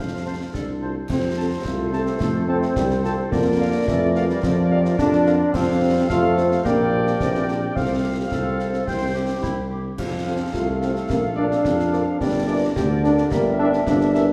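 Festive and spirited, this short cut from a longer military-style march for wind band moves at 108 BPM in a straight 2/4, settled in F major. A mellow tuba sits up front on the bass line, while a punchy, dark trombone section holds tight sustained chords from 0.5 seconds and carries the most weight in the blend. A warm cornet with light vibrato takes the melody from 0.3 seconds, placed in the background, with a mellow French horn section filling in tight accompaniment beside it. A clear, slightly vintage euphonium and a distant, roomy woodwind section with vibrato share the second line from the very start. Concert snare drum, concert bass drum and clash cymbals with dark cymbal tone drive the march, and the whole band sounds like it was captured in a church or concert hall with a generous two-second reverb tail.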